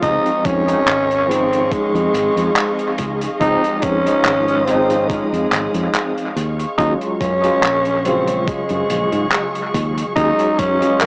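Heard through a cassette-tape haze with a small-speaker sound, this vaporwave excerpt sits in an echo-heavy mix with light reverb and a small room ambience, its tuning set at A4 = 437 Hz. At a relaxed 71 BPM in 4/4 with a gentle sixteenth-note swing, the mood is nostalgic and faded, moving from Dbmaj9 to Ebm11 at 6.4 seconds. Up front, a growling tenor saxophone carries the melody with a breathy, raspy subtone, soft attacks and scooped notes, trailed by tape echo. Beneath it, an overdriven tine electric piano supplies barky, gritty accompaniment through a combo amp, with fast tremolo, ensemble chorus and analog delay, while a lush bowed string section holds sustained chords high above. A dark, round fretless bass with tube saturation anchors the low end. The drums pair a thumpy, sampler-style electronic kick, which drops out at 10.8 seconds, with a tight, mid-forward funk kit of handclaps and hi-hat that carries analog delay.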